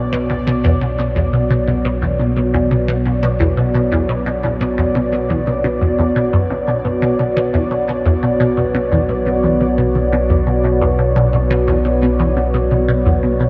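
Ambient, sequencer-driven space music in B minor at 87 BPM, this cosmic, mysterious passage cut from a longer piece rests on a single B minor chord for its full 13.5 seconds. A squelchy, juicy pluck repeats a low riff up front, colored by phaser, lush chorus, delay and vintage 12-bit sampler grit, while a bright, evolving pad holds sustained chords with a slow filter swell and a mellow analog drone on B1 anchors the bass. A huge, wet reverb with a 7.8-second tail and a dark production give the whole a vast, shadowy depth.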